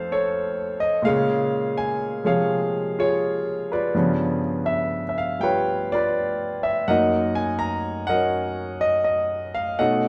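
Swung eighths at 82 BPM in 4/4 set the pulse, though the time bends freely in a rubato feel. This is solo jazz on a grand piano, warm and playful in mood, a short cut from a longer piece that runs to 10.1 seconds. The piano is clear, intimate and natural, sitting up front with its action noise audible. It spans F2 to Bb5, moving from F7 through Bbm9 and G7#11 before settling on Gb6 at 6.9 seconds. A wet studio reverb places the listener further back in the room, giving the close instrument a gentle halo.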